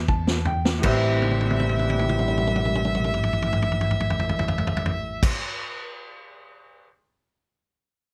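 A light reverb gives this short fragment of a slow blues in A minor a smoky, roomy feel, with the drum kit sitting up front and the piano tucked into the background. The tempo is a mournful 53 BPM in a 12/8 metre, resting on an Am7 chord. The drums open with a fill alongside a piano fill, the kick punchy and the cymbals dark, and the kit keeps filling through most of the passage before ringing out alone until 6.9 seconds. A plucked upright bass anchors the low end with a woody tone, while the bright upright piano adds accompaniment with a long sustain. An electric guitar through a small old amp joins at 0.8 seconds, slightly broken-up, lo-fi and compressed, pulsing with tremolo. Alongside them, a distant, overdriven harmonica plays a second line in a jazz style, its notes scooped and touched with light vibrato.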